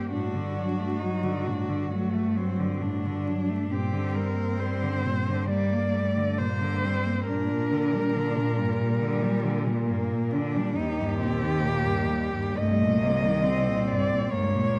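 Elegiac and melancholic, this short excerpt from a longer classical piece is a lyrical passage for four cellos in G minor, moving at a slow 68 BPM in 4/4 with a rubato feel. The melody sits highest, ranging from F#4 to Eb5 on a rich, focused cello played with vibrato and placed up front, while a second cello, close and equally rich, carries an inner line between G3 and Eb4. Beneath them, a clear-toned cello supplies the accompaniment from Eb2 to Bb3, and a fourth cello with a smooth top anchors the bass between C2 and Bb2, all four bowed by single players for the full 14.8 seconds. The harmony opens on D over G, settles into G minor at 3.7 seconds, then shifts to E-flat and finally to C minor seventh. A recital hall reverb with a 1.4-second decay surrounds the ensemble, and the dark production adds a layer of vinyl crackle that lends the sound an aged, intimate patina.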